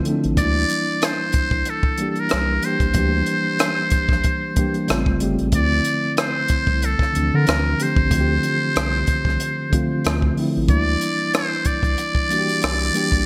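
Bright 1980s-style digital production with light reverb and a small room ambience frames this smooth, soulful neo-soul and R&B excerpt at 93 BPM, its sixteenths swung in 4/4. Up front, a trumpet with a metal mute carries the melody in a buzzy, raspy voice with light vibrato, scooped notes and growls, over a mellow tine electric piano heard through its built-in speakers and moving from Em7b5 through A7alt to Dm9. A dry cocktail drum kit with a punchy kick, hi-hat and rim click, treated with gated reverb, enters at 0.1 seconds, and a round, deep analog bass joins at 0.3 seconds.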